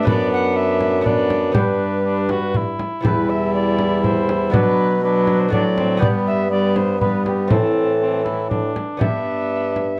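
This solemn, rustic renaissance-style consort dance in triple time opens with winds, strings and lute together. A pure, wooden alto recorder carries the melody with vibrato, a crisp, chiffing attack and a distant placement, while a mellow cor anglais with light vibrato sings a close-miked second line beneath it. A single bowed viola with a nasal, reedy gut-string tone and airy bow shares the accompaniment with a delicate, fingerpicked lute whose doubled gut strings sit in the background. An up-front bassoon with a warm, lightly vibrating tone anchors the bass, and a small, bright frame drum played with soft hands joins at 0.1 seconds in a small-room sound. Dark production with light reverb frames this passage, which is cut from a longer piece.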